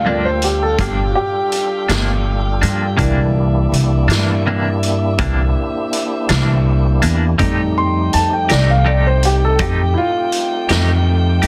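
Slow blues in 12/8 at 54 BPM, soulful and laid-back, with a grand piano soloing throughout over Gm7, C9 and F9, backed by a bright, clean semi-hollow electric guitar with tremolo and plate reverb, fat tonewheel organ chords with key click, slow rotary speaker and chorus vibrato, soft-attack saxophone section pads, a woody, growly upright bass up front, and a vintage drum kit with punchy kick and rolled-off top that enters at 0.4 s, all under a dense, heavily limited modern master.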